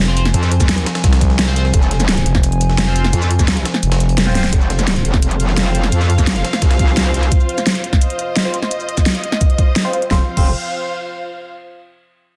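Dark technical drum and bass at 172 BPM in F minor, this tense excerpt cut from a longer piece opens directly on a drop. A growling, thick FM bass and a metallic, aggressive wobble bass with distortion and chorus sit up front, while a deep, moody analog pad breathes under sidechain pumping in the background. The drums stack an overdriven, knocking electronic kick and a dubstep kit with a huge snare, crash, hi-hat and shaker, plus a gritty, pitched-up breakbeat kit with a high-tuned snare tucked behind them. A nasal, band-passed chord stab with phaser, lush chorus and delay runs through nearly the whole excerpt and gets a filter sweep from 4.5 seconds. The kick drops out just before a drum fill at 4.3 seconds, and at 4.5 seconds a dark, intimate string section enters, bowed sul tasto with light vibrato and a soft attack. The master is dense and heavily limited, with light reverb and a digital ambience.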